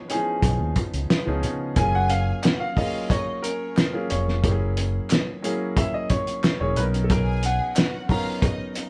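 A muffled, gritty drum kit sits up front with a fat snare, tight kick and hi-hat, anchoring this romantic 1970s-style soul groove at 90 BPM in a straight 4/4 in F# major. Two concert grand pianos carry the harmony and tune: one plays the melody with a warm, natural tone, while the other, clear and deep in the bass, supports it with accompaniment, moving through C#7, F#maj7, F#7 and Bmaj7. A dark, round fingered electric bass joins at 0.4 s, up front and amped. A lush violin section enters at 1.8 s with smooth, even bowing and vibrato as a soft second line alongside the piano melody. Crisp group handclaps arrive at 2.4 s in the background, and the whole band sounds as if playing live together in one room with moderate studio reverb, cut from a longer piece.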